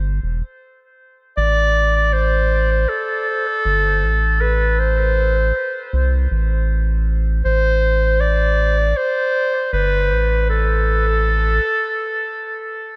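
Deep and meditative, this short ambient dub passage, cut from a longer piece, moves in an unhurried 4/4 with a gentle swing on the sixteenths. A round analog bass opens the recording, its dark, sustained tone sitting up front in the low register and thickened by tube saturation. At 1.4 seconds a clarinet enters with a clear, present, classical-style solo line in a narrow upper range, trailed by dub echo. The bass drops away at 11.6 seconds, leaving the clarinet on its own through a brief break before the recording ends at 13.0 seconds. A light studio reverb gives the whole a soft sense of space, and the tuning sits slightly low, at A4 = 438 Hz.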